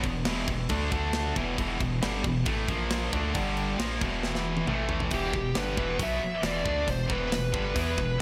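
A big arena sound with a lush hall reverb frames this dark, heavy metal excerpt in E minor at 136 BPM, where two bright, high-gain distorted guitars drive the riff from the start, the up-front one carrying a slapback echo. Underneath, a rubbery, hollow square-wave synth bass and a tight acoustic kit with bright cymbals and a tight kick hold the straight 4/4 groove, while the harmony moves through power chords on E, D, A#, G and A, and a drum fill at 4.2 seconds leads into the next section. At 5.1 seconds, as the harmony lands on E minor, a warm, distorted lead guitar enters up front with a high melody and its own slapback echo.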